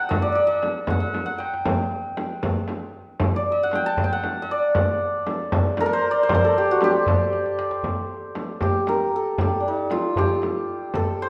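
Hypnotic and soulful, this short passage, cut from a longer piece, is a Persian modal ensemble performance in G avaz esfahan, moving at 78 BPM in a straight 6/8. The santur carries the melody from D4 to A5, its hammered strings shimmering and ringing up front, clearly above the percussion. Beneath it, the tombak sounds tight and acoustic, played with soft hands in a small-room tone, while the frame drum adds a vintage, band-limited color. The drums play a brief fill at 1.1 seconds and another just before the music shifts into a new section at 7.8 seconds. A wet recital-hall reverb wraps the ensemble in a resonant space.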